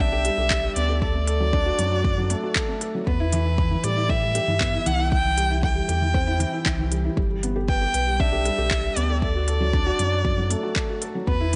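A nasal, expressive solo violin carries the melody up front with vibrato and portamento, floating over a felt-muted upright piano riff whose soft, intimate tone carries audible action noise and a digital delay. This hopeful, luminous piano and strings electronica excerpt moves at 117 BPM in a straight 4/4 through G, D, Em and C. A round sine sub bass pumps with sidechain, handclaps and crisp hi-hats from a tape-toned kit enter at 0.2 seconds, and a layered deep kick joins at 0.5 seconds, all set in light digital ambience with a softened top end.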